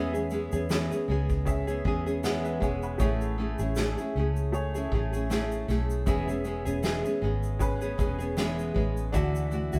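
A relaxed 4/4 groove at 78 BPM with a light 55% swing on the sixteenths gives this short acoustic pop fragment a carefree, sunny lilt in E mixolydian. The unplugged drum kit enters at 0.1 s, played with bundle sticks: a tight kick, a medium-tuned snare and a shaker, all sounding natural in a studio room. A fingerpicked nylon-string guitar with a deep classical tone sits up front alongside a vintage, foam-muted fingered electric bass whose dark, round, amped sound anchors the low end. At a lower level, a clear, present upright piano, worn and slightly detuned, adds woody, intimate chords with long sustain and audible action noise. The harmony moves from E6 to Amaj7, back to E6, and touches Dadd9 at 9.1 s, while the band plays live together in a moderate stone room whose reverb lends the ensemble a gentle, airy glow.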